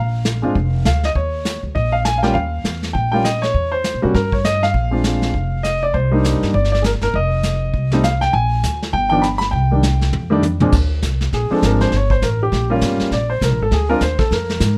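Playful and relaxed, this brief swinging jazz piano trio excerpt sets a warm baby grand piano with long sustain, up front alongside a woody pizzicato upright bass, over a dark, smooth vintage brush kit with a punchy kick that enters at 0.2 seconds and plays a fill from 10.1 seconds just before the piano takes a solo at 10.7 seconds, all captured close and dry.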